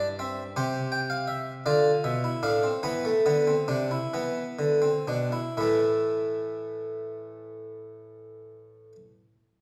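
Contemplative yet driving, this excerpt from a longer classical piece is a baroque-style three-part fugue in 6/8, played on a solo French-style harpsichord whose single set of plucked strings sounds round and up front. The opening passage slows down through a sequence of chords that passes through A minor and arrives on E before a new section begins at 5.6 seconds, and the instrument stops at 9.0 seconds. A reverberant recital hall surrounds the playing, heard from further back in the room.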